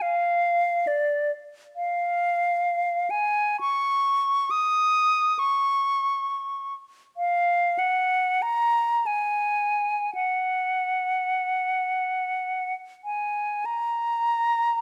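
A lone silver concert flute opens this meditative, yearning classical excerpt, its airy, metallic tone shaped by vibrato and soft attacks as it sings up front between D5 and D#6. The expressive phrasing unfolds in free, unmeasured time until a new section begins at 13.7 s, just before the recording is cut at 14.8 s. Close, detailed microphones capture the instrument with light reverb.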